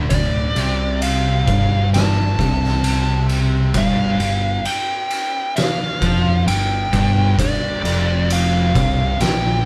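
Brooding and heavy, this stoner and doom metal excerpt moves from D minor to G5 with two thick, picked fuzz guitars churning the riff low in the background, an overdriven fingered bass adding a growly, punchy tube-saturated bottom, a dark fuzz lead guitar with wah and distortion carrying the high melody from 0.1 seconds, and an oversized low-tuned drum kit sitting up front with a fat snare, punchy kick and ride cymbal, all of it played live in one room under moderate studio reverb.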